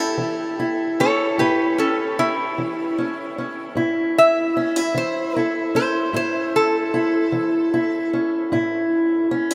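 In a slow 12/8 at 50 beats per minute on the dotted quarter, with a straight feel, this soulful, gritty acoustic country blues fragment sits in A major, tuned slightly sharp with A4 at 441 Hz. A lap resonator guitar carries the melody from C#4 to E5, its slide tone bright, metallic and nasal, played with fingerpicks and placed up front. Beneath it, a fingerpicked steel-string parlour guitar supplies the accompaniment from A2 to E4, with a dark, boxy voice that also sits close to the listener. Both instruments ring out in a vast, echoing space, wrapped in a huge ambient reverb with an 8.4-second decay. The resonator falls silent at 8.1 s, leaving the acoustic guitar to play alone until the cut at 9.5 s.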